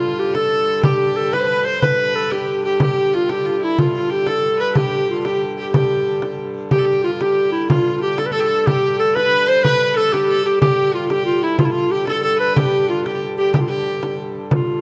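A steady 6/8 pulse at 123 BPM carries this rustic, ancient-sounding medieval dance in G mixolydian: a mellow clarinet leads the melody up front, a clear viola da gamba with light vibrato and an airy, ringing bow traces a softer second line until 14.1 s, a dark, woody hurdy-gurdy holds a low drone, and a small, bright frame drum played with soft hands joins at 0.3 s, the group heard through close, detailed microphones in a moderate concert-hall reverb in this fragment of a longer piece.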